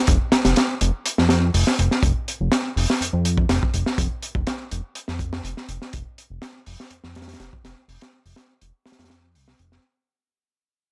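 A crunchy, gritty breakbeat kit with a punchy kick, high-tuned snare and hi-hat starts together with a fat, nasal analog bass of detuned sawtooth and square waves with a filter pluck from 0.1 seconds. Both sit up front in a dry mix, the kit heard in a small room, for an energetic, raw breaks cut from a longer piece that fades out across its whole length.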